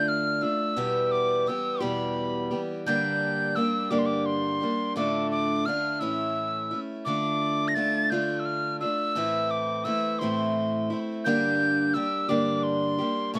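A mellow tin whistle with an airy, chiffy tongued tone, vibrato and rolled-off highs carries the melody from the start over an up-front picked archtop acoustic guitar with fresh strings, giving this reflective, intimate folk excerpt in a straight 6/8 a close, softly reverberant feel across its 13.4 seconds of minor-key chords.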